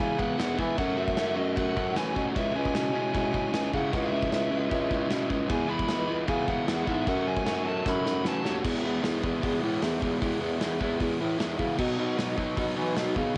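A straight 4/4 drive at 153 BPM pushes this rebellious, energetic punk rock excerpt in E major, with a loose indie drum kit of punchy kick, medium-tuned snare, hi-hat and dark crash cymbals sitting in a pumping studio room, capped by a drum fill from 7.9 to 8.6 seconds. A bright, up-front overdriven electric guitar and a crunchy overdriven guitar tucked in the background pick out riffs over chords moving from C#m and F#m to E and B, while a vintage, classical-style bass clarinet holds the bass line. A biting lead guitar carries the melody until 8.5 seconds, and the whole has the dry, homemade feel of a cassette recording.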